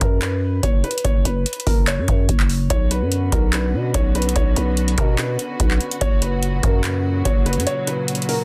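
The excerpt opens on a dark, worn, boxy baby grand piano melody with audible action noise and tape echo, over a growling, buzzy 808-style bass and a booming analog drum machine of deep kick, metallic hats and handclaps up front in this eerie, hard-hitting half-time trap beat, as veiled con sordino strings add sustained chords from 2.7 seconds and the kick drops out at 7.7 seconds in a dense, heavily limited mix with little reverb.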